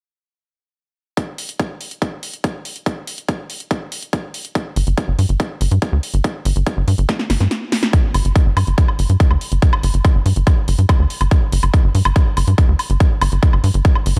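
A tape-saturated electronic kick, re-recorded in a large room and placed up front, opens at 1.2 s alongside an overdriven techno kit of hi-hat, punchy snare and woodblock, driving this alien, dark psychedelic trance excerpt at 142 BPM; a tight, nasal sawtooth-and-square sequencer bass with a plucky, fast-attack filter enters at 4.8 s in the G1 to G2 range, and after a drum fill from 7.1 s, with the kick dropping out from 7.5 to 7.9 s, the groove resumes in a new section, the whole excerpt set in a digital ambience.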